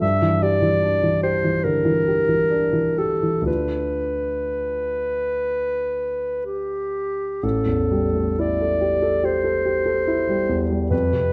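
Classical impressionist duo for clarinet and concert grand piano, this hazy, mysterious excerpt moves in a loose rubato 4/4 feel. A clear, classically styled clarinet carries the solo melody up front, while the warm piano, deep in the bass with a polished, short-sustained touch, supplies the accompaniment through shadowy Gm6 and Dm6 harmonies. At 7.4 seconds the music shifts to a new section on Am7, all set in a moderate recital hall reverb.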